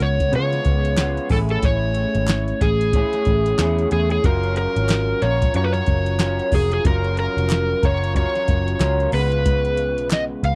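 This indie pop and bedroom pop excerpt moves at a laid-back 92 BPM in 4/4 with a lazy 16th-note swing, in F# major, and carries a nostalgic mood. An up-front overdriven slide guitar carries the melody with a dark, gritty tone and a subtle chorus. Beneath it, an electric guitar played through a small old amp adds a slightly broken-up, compressed, lo-fi fingered accompaniment with analog chorus and a warbly pitch drift. A round, foam-muted picked bass sits forward in the mix, and a soft vintage rhythm box supplies a deep kick, crisp snare and metallic hats with a tape-warm character, re-recorded in a large room. Hollow group handclaps enter at 1.0 s and stay in the background, while the harmony moves from C#7 through Amaj7 and F#maj7 before returning to C#7 at 9.1 s. The overall sound is dry and close, like a 1970s studio recording, with very little reverb.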